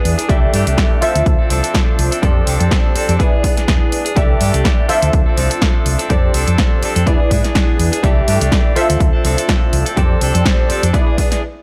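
A swung 4/4 groove at 124 BPM, with a 56% shuffle on the sixteenths, drives this funky, joyful stretch of filtered disco house, cut from a longer piece. A punchy, up-front electronic kick enters at 0.3 seconds beneath a house kit of punchy snare and warm hats, the hats pumping and the kit sitting in studio reverb. A round, hollow-body fingered electric bass with a dark, amped tone anchors the low end, while a nasal, detuned sawtooth polysynth comps with chorus, phaser and a filter sweep over a sub octave. A bright, twangy clean guitar, recorded direct and roughened by vintage 12-bit sampler grit, plays a picked riff through the same low-pass filter and sidechain pumping that shape the synth and bass. The harmony cycles through C6/9, Dm7, F6 and E7 inside a digital ambience, and the whole groove halts at 11.4 seconds.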